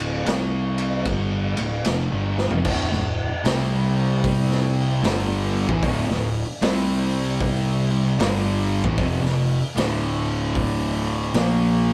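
A rough rehearsal-room recording with light reverb frames this hypnotic, heavy stoner and doom metal excerpt in D minor at 76 BPM in a swung 4/4, where a dark, compressed fuzz guitar and a thick, warm fuzz guitar churn riffs in the background over a growly, overdriven fingered bass, while a raw garage drum kit sits up front with a boomy kick, dark cymbals and a gritty, rolled-off pumping room sound, playing a fill at 2.3 seconds before a bright, double-tracked overdriven electric guitar joins the riff at 2.7 seconds as the power chords shift among D5, C5 and F5.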